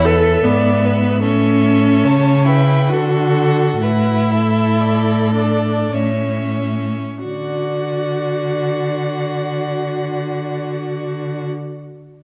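An up-front, focused cello carries the bass beneath a smooth viola accompaniment in this serene excerpt from a slow, romantic string quartet movement in D major, moving in a rubato 3/4 between 44 and 80 BPM. Above them a bowed violin sings the melody while a second, close violin traces a supporting line, each player using vibrato and all four sounding clear. The music slows from the opening until a new section arrives at 7.2 s on a D chord, all set in a dark, reverberant recital hall.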